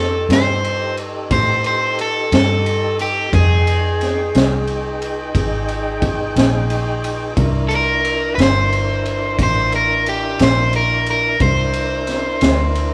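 Laid-back and gritty, this slow blues excerpt in 12/8 sits at 59 BPM with a straight feel, moving from a rootless F9 through Fm7 to C9. An up-front, crunchy overdriven guitar carries the melody, picked with a warm edge. Beneath it, a clear tonewheel organ holds sustained chords through a slow rotary speaker and light overdrive, while a dark, round, foam-muted fingered electric bass anchors the low end. A saturated breakbeat kit enters at 0.3 seconds with a punchy kick, high-tuned snare and dark ride cymbal, its top rolled off, the band sounding live in one room with moderate reverb.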